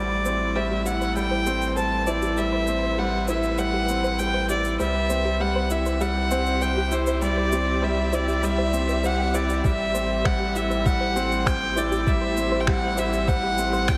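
Piano and strings electronica with a hypnotic, cinematic build-up, cut from a longer piece, where an up-front, biting violin carries the melody over a woody upright piano riff, lush, distant string-section chords and a round sub bass that both pump with sidechain, a very quiet, detuned pluck arpeggio, overdriven electronic shaker and finger snaps from 0.3 s, and a muffled, thumpy kick arriving at 9.6 s, with shimmer reverb on the violin, piano and strings inside a concert-hall space.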